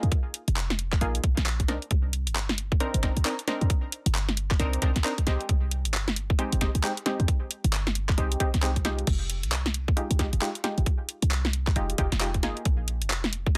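A moody, bouncy two-step UK garage groove at 134 BPM in F dorian, swung on the sixteenths and cut from a longer piece. Detuned sawtooth chord stabs, punchy and bright with a filter sweep, fast attack and short decay, carry a chorus shimmer, vintage 12-bit sampler grit and digital delay as they move through Bb7sus4, Cm9, Abmaj7 and Fm9. Underneath, a short 808-style bass sits up front, a tight sine tone with a noise layer that hits fast and then decays. An overdriven electronic kick joins at 0.1 seconds, tight and layered, alongside an overdriven garage kit of hi-hats, handclaps, crash cymbal and a cracking snare. The mix has light reverb and a dense, heavily limited modern master.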